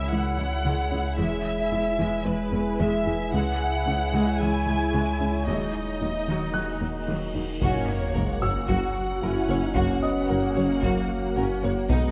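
A tense, vast stretch of hybrid orchestral and electronic film score opens at 112 BPM in 4/4 with bowed violins singing a lush, expressive melody over smooth violas, a mellow analog drone that evolves through chorus-tinged sawtooth and pulse-wave chords, a deep, round sub bass, and a clear, intimate baby grand piano that sits far back with tape echo and audible action noise. Almost at once a dark, soft pluck adds chorused arpeggios in the background, and cellos enter behind it. The harmony moves from C#m through E and D#m, and at 7.0 seconds a huge, bright cymbal swell and sub drop build toward an impact at 7.6 seconds as the chord turns to F#. There a second violin line, a warm French horn section holding chords, a very quiet tuba and woody double basses, and a close, dry taiko ensemble struck with heavy sticks all join to thicken the sound. The whole passage sits in a moderate scoring-stage reverb and carries the warble and pitch drift of worn cassette tape, tuned slightly high at A4 = 443 Hz.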